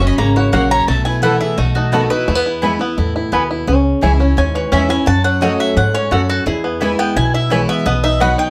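An up-front, woody mandolin carries the melody in this driving, joyful bluegrass excerpt in E major at 172 BPM. A second picked mandolin adds stabs from 0.5 seconds, and a clear, earthy fiddle with light vibrato plays a distant second line until 2.6 seconds. Underneath, a bright, full-bodied dreadnought guitar picks the accompaniment, a twangy, percussive banjo plays arpeggios with fingerpicks, and a dark pizzicato upright bass sits up front, all in a moderate studio reverb as the harmony moves from F# through B7 to E, then C#m, F#m, E and B.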